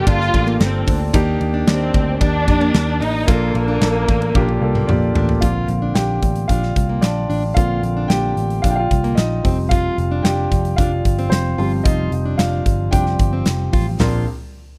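A concert grand piano with deep bass sits up front in this uplifting, hopeful piano-driven pop passage in Bb major, cut from a longer piece and moving at 112 BPM in a straight 4/4. At the start, a dark, lush studio violin section carries the melody with vibrato, portamento and a soft, bowed attack, singing over chords that move from Gm7 through Ebmaj7 to Bbmaj7 before the strings stop at 4.9 seconds. A huge arena drum kit, polished and airy with bright cymbals, a punchy kick and a medium-tuned snare, drives the groove and plays a fill from 4.4 seconds. At 5.4 seconds the piano takes a solo over Bbadd9 and Fsus2 harmonies, backed by a round, foam-muted vintage electric bass with a dark, amped tone. Tucked in the background, a full-bodied jumbo steel-string acoustic guitar plays a fingerpicked riff, all captured in a dry, close, 1970s-style studio sound with little reverb.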